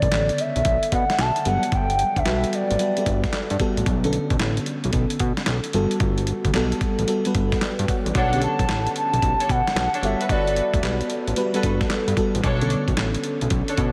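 A hollow, woody synth lead with a clarinet-like voice carries the melody in two short phrases, from 0.0 to 3.6 seconds and again from 8.2 seconds, colored by chorus, delay and gentle vibrato. This is a confident, bouncy slice of new jack swing R&B in B minor at 112 BPM, with a swung sixteenth-note feel, cut from a longer piece. A lush FM electric piano layered with a soft pad holds the harmony throughout, moving between Bm9 and Gmaj9, while a fat, saturated analog bass with a filter sweep anchors the low end. A gritty, compressed sampler-style drum kit sits up front with a thumpy kick, medium-tuned snare, hi-hat and handclaps. From 8.2 seconds a muted, veiled string section adds quiet bowed stabs with delay, and the whole mix is soaked in a cathedral-sized reverb that gives it a dreamy haze.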